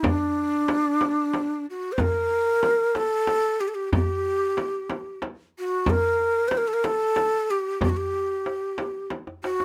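Lightly reverberant and close, this passionate, festive Persian modal piece in G avaz esfahan moves at 62 BPM in 6/8, with a breathy, hollow ney carrying the melody up front with vibrato and a crisp attack over a deep, soft-handed tombak and a dry frame drum, the frame drum dropping out at 9.3 s as a drum fill closes the passage.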